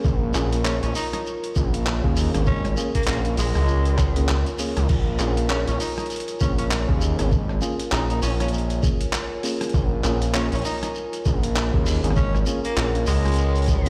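The excerpt opens at once on a Bbm7 chord, with a dark, detuned analog pad holding sustained chords in the background, clean tine electric piano stabs played through a combo amp, a saturated, up-front synth bass with a sawtooth snarl, a thumpy, pitched-down electronic kick and a grainy shekere close in the background. This is swaggering, funky glitch hop with a swung sixteenth-note feel, and both the pad and the electric piano pump against the sidechain, while tape echo trails the piano stabs. At 0.3 seconds a gritty, compressed boom bap sampler-style kit joins with crash cymbal, handclaps, hi-hat and rim click, sharing the tape-warm, pitched-down character of the kick. At 0.7 seconds a raspy, growling tenor saxophone takes the solo melody in a jazz style, with vibrato, 12-bit sampler grit and its own tape echo. The whole mix sits in light reverb with the stony sound of a big system playing in a bare room.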